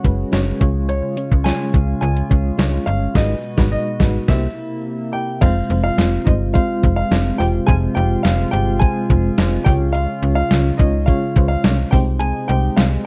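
Nostalgic and moody, this 1980s-style pop excerpt moves at 106 BPM in a straight 4/4, settling into F minor from 5.4 seconds after an opening that passes through suspended, seventh and minor chords. A gated digital drum machine sits up front with a thumpy kick, a gated-reverb snare, hi-hat, tambourine and crash cymbal, its tape-tinged sound seemingly re-recorded in a small room, while a snappy FM bass with a metallic attack drives the low end beside it. A dark FM electric piano with tremolo supplies the accompaniment, and a shimmering, chorused pulse-width pad holds sustained chords in the background. A polished grand piano carries the melody with a slapback echo, and from 5.1 seconds a soft, felt-muted upright piano adds a very quiet, intimate second line with audible action noise. The whole band hits an accent between 3.2 and 5.4 seconds, and the dry, close production recalls a 1970s-style studio.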